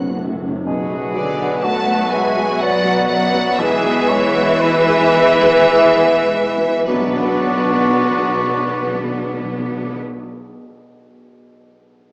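Heard through a small speaker, this cut from a longer orchestral film cue sits in a wet scoring-stage reverb, its sorrowful, longing mood unfolding in a rubato triple metre that slows through its first 6.9 seconds. A clear studio violin section carries the vibrato-rich melody high above, while an airy, hollow small flute group, a distant and very quiet symphonic violin section, and a soft-attacked cor anglais entering at 0.7 seconds weave second lines in the background. A warm solo clarinet touches its line at the very start and returns at 6.9 seconds. Beneath them, a lush viola section and a dark, vintage baby grand piano supply accompaniment, a mellow French horn section holds sustained chords, and a ringing, thumb-plucked concert harp adds very quiet arpeggios. Close, focused cellos and an expressive double bass section anchor the bass, hard-mallet timpani open with an articulate, dry fill, and the piano is the last to sound, lingering until 12.1 seconds.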